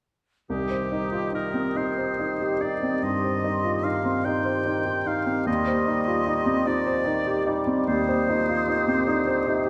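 Classical romantic movement for piano and orchestra in C minor, brooding and tragic, unfolding slowly in a rubato 12/8 at 47-52 BPM, where an intimate, polished grand piano carries the melody up front with long sustain and audible action noise, a close-miked solo oboe with vibrato adds a second line beside a distant, mellow clarinet and a pure, hollow flute section in the background, and a soft-attacked bassoon with light vibrato supplies accompaniment, the ensemble set in a wet concert hall reverb as the harmony shifts from Cm to Cm/Eb at 5.5 seconds in this passage cut from a longer piece.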